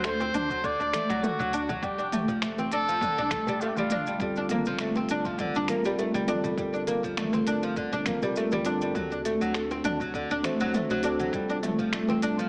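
Organic downtempo in G minor at 101 BPM, this hypnotic, warm cut from a longer piece moves with a gently swung 16th-note lilt. A cup-muted trumpet carries the melody up front for the opening 4.2 seconds, its soft, veiled tone touched with light vibrato, tape echo and 12-bit sampler grit, sounding distant and roomy. Underneath, a woody, fretless oud plays plectrum-plucked arpeggios throughout, its double strings darkened by a low-pass filter and trailed by tape echo. At 4.2 seconds, muted, felt-like synth keys enter as accompaniment, dark and intimate with chorus, sampler grit and sidechain pumping. A round sine sub bass with tube saturation sits deep in the background beside an overdriven electronic kit of finger snaps, crisp hats, shaker and toms, while close bongos and congas and a thumpy, gritty electronic kick stay low in the mix. The chords move from D7 and F into a long Gm7, all set in a concert-hall reverb heard through a small-speaker filter.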